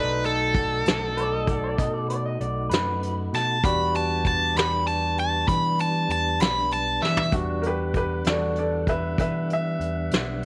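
In a slow 12/8 blues pulse at 65 BPM in E minor, a brooding, smoky passage opens with an overdriven, up-front stack guitar singing the melody over bright, woody upright piano, a mellow tonewheel organ with key click and slow rotary speaker, a round, dark picked electric bass and a fat-snared brush drum kit, while a lo-fi, slightly broken-up second guitar with phaser slips in briefly from 1.2 seconds, and after a drum fill the intimate, polished piano takes a solo from 7.3 seconds in a small, lightly reverberant room.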